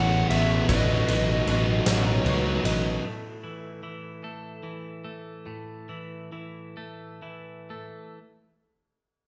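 In a straight 6/8 feel, this soaring, cinematic post-rock fragment opens in one reverberant room with an overdriven slide guitar melody over a crunchy guitar riff with spring reverb, a sludgy distorted guitar riff, up-front fuzz bass and dark lo-fi arpeggios from a small old amp in the background. A huge arena kit with punchy kick, fat snare and bright cymbals joins moments later, before the band drops away at 3.0 seconds, leaving a clean, compressed, twangy twelve-string electric guitar picking arpeggios alone as the pace slows.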